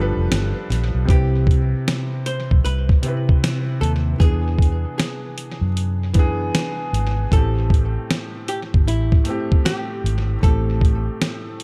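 A hazy, echo-heavy mix with light digital ambience frames this melancholic lo-fi hip hop excerpt at 77 BPM with a swung 16th-note feel, where a dark, hollow-body archtop guitar carries the melody through tape echo over a soft felt-muted upright piano with audible action noise, a round, punchy foam-muted electric bass sits up front, and a gritty, compressed sampler-style drum kit with thumpy kick and fat snare enters at 0.3 s as the chords move from G7 to Cmaj7, E7 and Am7.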